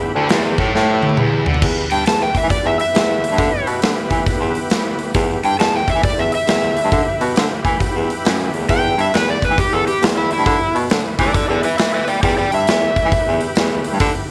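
A swung 4/4 groove at 136 BPM drives this brooding, gritty mix of blues rock power trio and southern rock in E minor, cut from a longer piece and set in light reverb. A bright, double-tracked distorted electric guitar riff opens the piece and is joined at 0.3 seconds by a big, punchy acoustic drum kit that plays a fill before the riff stops at 1.6 seconds. Meanwhile, a baritone saxophone carries the bass line with subtone, vibrato and scooped notes, and a thick, overdriven tonewheel organ holds sustained chords with chorus vibrato in the background. From 1.9 seconds an up-front overdriven slide guitar takes the solo melody, fingered with a warm tone.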